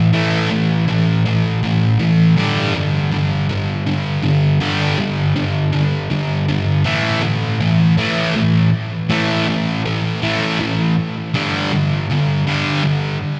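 Drenched in a cathedral-sized reverb with a 4.8-second decay, this dreamy, cloud-like mix sounds vast and haunted. It is a brief rock excerpt in a steady 6/8, cinematic and melancholic in mood. A single thick fuzz electric guitar carries everything as a solo voice, picked and double-tracked, sitting up front with a bright, distorted edge and a trail of delay. Its low register moves between A5 and G5 chords, shifting to G5 at 2.4 seconds, back to A5 at 6.9 seconds, and to G5 again at 11.3 seconds. The opening stretch builds up until 6.9 seconds, when a new section begins, and the guitar rings on until 13.2 seconds.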